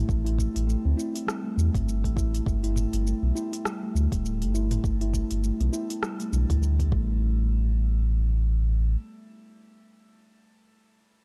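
The recording sounds dry and gritty, with a hardware edge of transformer saturation and faint lossy compression artefacts in a room carrying little reverb. This is a warm, earthy piece of organic downtempo at 101 BPM in 4/4, with a 16th-note swing that gives it a gentle lilt. A steel tongue drum struck with rubber mallets plays pure, ringing arpeggios, dressed in analog delay and shimmer reverb. Beneath it, a deep, round sine sub bass sits up front, its fast attack and mellow sustain pumping with sidechain, alongside a soft electronic kick. An organic electronic kit adds crisp hi-hats, rim clicks, shaker and toms over an A7(no3) harmony that moves to G at 2.5 seconds. The tongue drum stops at 7.5 seconds, leaving the sub bass alone until it ends at 9.0 seconds, where this fragment of a longer piece is cut off.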